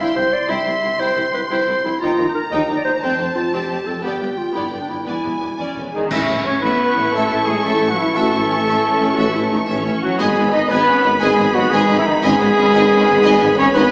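A heroic, soaring stretch of adventure film score in 12/8 at 118 BPM opens on bowed strings with vibrato, the lush violins carrying a focused melody over a second violin line, rich violas, cellos and double basses, while an up-front, mellow clarinet weaves a solo line through the first 5.6 seconds. At 6.1 seconds, as the music settles into A lydian, a band accent brings a close crash of dark clash cymbals and concert bass drum. Around then a warm French horn section and a dark, distant trombone section sustain chords alongside clear trumpet stabs, a cor anglais and a pure, very quiet flute join as second lines, and a close-miked tuba reinforces the bass, all bathed in the reverberant glow of a concert hall.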